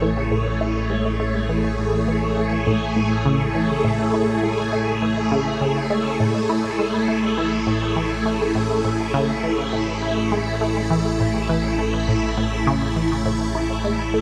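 A bright, swirling string machine sits up front, holding sustained chords through ensemble chorus and phaser across the whole 14.2-second excerpt of this luminous, cosmic ambient space music, set at 102 BPM in 4/4 in A major on a single Amaj7 chord. Beneath it, a squelchy, resonant blip pluck repeats a sequencer-style riff with a fast attack and short decay, roughened by 12-bit sampler grit and carried by phaser and analog delay. A warbling, evolving analog drone holds a low A in the bass under chorus, and the whole dreamy mix is soaked in a cathedral reverb with a 6.4-second tail.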